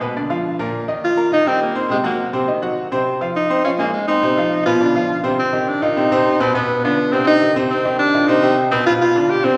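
Passionate and driving, this latin piece moves at a brisk 207 BPM in C minor, with a bright grand piano comping up front from the start and a clear tenor saxophone taking the solo melody at 1.0 s with light vibrato and a smooth, pop-styled top. At 5.4 s the harmony turns toward C harmonic minor, the piano's brilliant, short-sustained chords circling Cm, Cmmaj7 and Bdim beneath the saxophone's lead. Both parts sit forward in a wet recital hall, its 1.8-second reverb giving this fragment of a longer piece a churchlike bloom.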